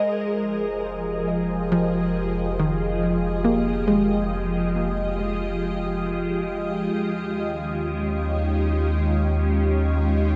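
A weightless, peaceful ambient passage at 69 BPM opens with an up-front, morphing wavetable pad holding detuned sustained chords through a filter sweep, ensemble chorus and phaser, alongside dark, gentle pluck arpeggios with tape echo that stop at 7.1 seconds and a deep, wave-folded analog bass, while a warbling, vintage organ-like drone fades in from 3.1 seconds in the background as the harmony moves from Fm7 to Eb7 beneath a huge, wet reverb.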